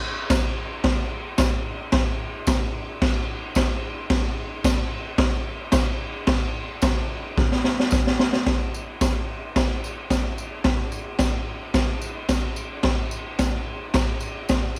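Raw and gritty, this short rock excerpt in straight 4/4 is carried by an up-front garage drum kit with a boomy kick, a high-tuned snare and crashing cymbals, its saturated, mid-forward sound dulled at the top by a rolled-off, small-room character. A jingly tambourine sits quietly in the background. A drum fill from 7.4 to 8.5 seconds leads into a new section, and the dry sound carries little reverb throughout.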